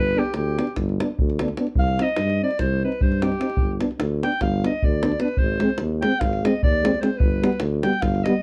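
An alto saxophone and a tuba open this short fragment of Balkan folk brass together, and the pulse is restless and fiery at 298 eighth-note beats per minute in 9/8 with a straight feel. The alto saxophone carries a second line between G4 and G5 with a warm, vibrato-laden tone that sits up front yet sounds distant and roomy. Beneath it the tuba holds the bass in a mellow register with light vibrato, while a dark euphonium and a smooth-topped French horn enter at 0.2 seconds to fill out the accompaniment, the horn tucked into the background. From 0.3 seconds a deep, close and dry davul drives the percussion. The harmony moves in G phrygian dominant through G, Cm, G, Ab and back to G, with tuning at A4 = 442 Hz. A modest small-room reverb surrounds the band, and the whole recording carries the worn, warbling pitch drift of old cassette tape.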